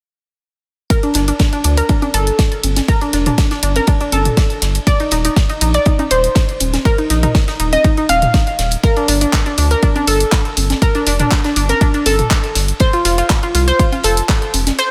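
Progressive house with an emotional, dreamy mood, cut from a longer piece and driven by a steady, straight four-four pulse. A punchy, layered electronic kick sits up front alongside a deep, round analog bass with tube saturation and sidechain pumping, its dark, sustained tone shaped by a filter sweep. Above them, a bright, warbling analog pluck plays arpeggios through chorus, tape echo and sidechain pumping, giving the line a vintage sheen. A tape-warmed house drum kit adds handclaps and hi-hat with a large-room character, while a small-room acoustic funk kit in the background supplies ride cymbal and a high-tuned snare, its cymbals pumping and high-passed. Electronic congas and toms join at 2.0 seconds, also in the background, as the harmony moves through G5, Eb5, G5 and F under a light digital ambience.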